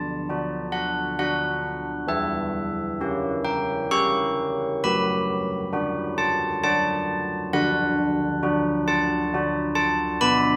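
Classical church-bell tune in D major at 67 BPM in 3/4, this solemn, wintry fragment cut from a longer piece features solo carillon bells ranging from D3 to C#6, their bronze, ringing tone with a minor-third overtone and iron clapper sitting up front in close, detailed sound with light reverb, moving from D through Em6 at 2.1 seconds and D/F# at 4.9 seconds back to D by 7.5 seconds.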